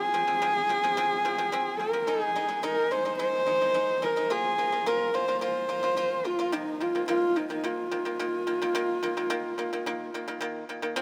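A horsehead fiddle and a pipa begin together, opening this short fragment of Mongolian folk music with a windswept, vast mood at 108 BPM in a straight 4/4. The bowed fiddle carries the melody between Eb4 and C5, its horsehair strings giving a husky, warm tone with light vibrato, a soft attack, portamento slides and an airy bow. A single player sits close and up front, lending the line an intimate feel. Beneath it the pipa plays bright, percussive arpeggios picked with fingerpicks, its acoustic sound dry against the lower register from Eb3 to F4. The harmony moves through F5, Ab5, Bb5 and Eb5, while a huge ambient reverb with an 8.6-second tail opens the space around the music. The fiddle falls silent at 10.4 seconds, leaving the pipa to finish alone at 11.0 seconds.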